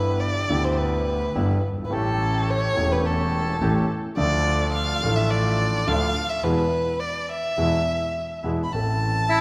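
Bathed in a wet concert-hall reverb, this dramatic, sultry tango excerpt at 106 BPM unfolds with a rubato feel as a close, expressive bowed violin solos with vibrato and portamento over a grand piano with a deep bass, an earthy, distant bowed double bass and reedy, bright bandoneon stabs, the band adding accents from 6.4 seconds as the chords move through G6, A7, Dm and E to Am, before a dark, smooth bandoneon melody enters in the background at 9.3 seconds.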